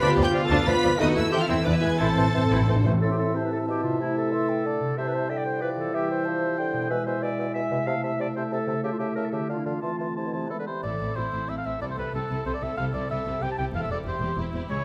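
A lush, vibrato-rich violin section carries the melody in this stormy, restless excerpt from a fast romantic symphonic movement in A minor at 186 BPM in 3/4, joined by a soft-attack second violin line, focused violas, smooth cellos and close, expressive double basses at the start and again from 10.8 seconds. From the opening, an airy, hollow flute, a distant, roomy clarinet, a present bassoon and a French horn section holding sustained chords fill the middle, while a smooth-topped oboe and a ringing, fingerpicked harp playing arpeggios continue throughout. A close timpani fill with medium mallets lands at 2.0 seconds, and the orchestra sits in a moderate scoring-stage reverb captured with detailed microphones.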